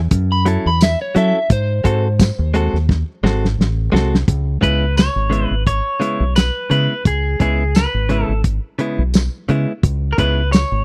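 A lightly swung straight-eighth groove at 86 BPM in 4/4 drives this smoky, soulful soul-blues excerpt in C# minor, where a muffled, lo-fi drum kit with fat snare, tight kick, hi-hat and tambourine sits up front beside a dark, round, punchy fingered bass, a clean, direct-recorded electric guitar plays compressed picked stabs throughout, a slightly broken-up slide guitar played with fingerpicks takes a short solo from 0.3 s to 2.9 s ahead of a drum fill, and at 4.6 s a twangy, compressed guitar at the edge of break-up carries the melody with vibrato, captured in a dry, close 1970s-style small-room sound.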